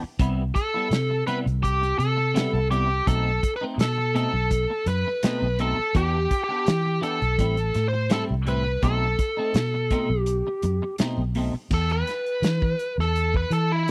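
A biting, overdriven lead guitar with slapback echo carries the melody through this smoky, soulful soul-blues excerpt over bright, twangy clean electric guitar stabs dressed in chorus, a round, punchy muted fingered bass and a dark-cymballed soul drum kit with a tight kick, all in a dry, close 1970s-style studio sound, until the clean guitar drops out at 11.6 seconds and the lead takes a short solo from 11.7 seconds.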